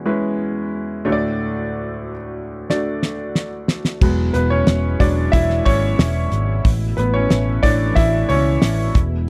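A clear, worn concert grand piano with deep bass accompanies the opening of this hopeful, uplifting piano-driven pop piece at 91 BPM in E mixolydian, moving from E6 to D before stepping forward for a solo from 4.0 seconds over E6 and A. A damped 70s drum kit with dark cymbals, a fat snare and a tight kick enters with a fill at 2.7 seconds. A round, punchy, foam-muted electric bass then joins alongside a very quiet, detuned sawtooth pad with chorus, ring modulation and a filter swell, all captured in a dry, close 1970s-style studio sound.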